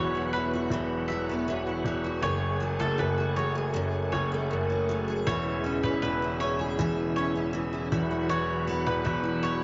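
Sunny and carefree, this short acoustic pop passage in E major moves at an easy, straight 79 BPM in 4/4, cut from a longer piece. A bright, full-bodied dreadnought steel-string guitar, double-tracked and up front, carries the picked accompaniment with the snap of fresh strings. A mellow, round mandolin adds high picked arpeggios on its doubled strings. A clear concert grand piano takes the bass role down low, polished and present with a short sustain. Behind them, a tonewheel organ holds sustained chords with a lightly overdriven, shouting edge, key click, chorus vibrato and a slow rotary speaker. The harmony drifts from Esus2 through F#madd9 and C#m/E before settling back on Esus2 at 7.9 seconds, all in a small room with light reverb and a soft, rounded top end.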